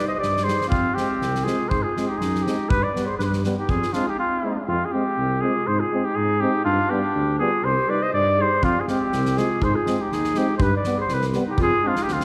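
A clear, vintage-toned flugelhorn leads this fiery Balkan brass band excerpt, carrying the melody up front with a light vibrato in a classical style. Behind it, a clarinet plays a second line in the background, while two euphoniums supply accompaniment, one mellow with a light vibrato and the other softly attacked. A dark tuba anchors the bass from a distance, its light vibrato sounding roomy. The music moves in a two-beat metre with a slight swing and a virtuosic energy. An acoustic drum kit with a fat snare and punchy kick drops out at 4.0 seconds and returns at 8.6 seconds, while the whole band sits in the lush reverb of a church or concert hall.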